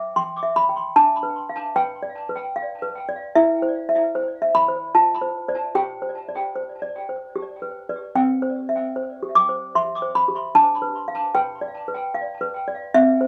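A solo toy piano, clanky and bell-like with a slightly out-of-tune shimmer and a touch of tape echo, carries this dreamy, innocent classical lullaby at 75 BPM in a gentle, straight 3/4. Its close, detailed sound sits up front in a moderate studio reverb, tuned to A4 = 439 Hz and spanning C4 to D6. Simple harmonies drift from C through G7, Dm7 and Gsus4 and back across this brief passage, which is cut from a longer piece.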